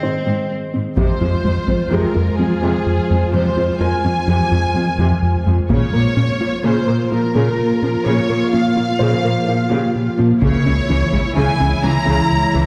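Brooding and tense, this cinematic hybrid orchestral and electronic film score moves at 127 BPM in 5/4 in F minor, opening with a brief distant solo cello line touched with delay over a dark, rumbling drone washed in phaser, a mellow pluck arpeggio, a muted felt upright piano with delay, and a background cello section carrying the bass. At 1.0 seconds a lush, vibrato-rich violin section takes the melody over close viola accompaniment and a fat, detuned analog bass riff, while compressed, saturated taiko hits struck with hard sticks mark the chord changes at 1.0, 5.7 and 10.4 seconds. The harmony shifts from F minor through Bb minor to Db minor, all set back in a reverberant scoring stage in this excerpt from a longer piece.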